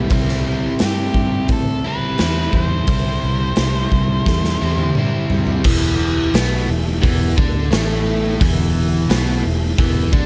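A bright, double-tracked overdriven guitar riff opens this heavy, smoky blues rock and southern rock excerpt in E minor at 87 BPM, over a round, foam-muted fingered bass and a very quiet, piping tonewheel organ with key click and slow rotary speaker holding sustained chords. A saturated, gritty garage drum kit sits up front with a punchy kick and pumping stone-room sound, while a dark octave-fuzz lead guitar plays a short melody from 0.8 to 4.9 seconds. A drum fill leads the harmony from C to Em at 5.7 seconds, all set in light reverb and studio ambience.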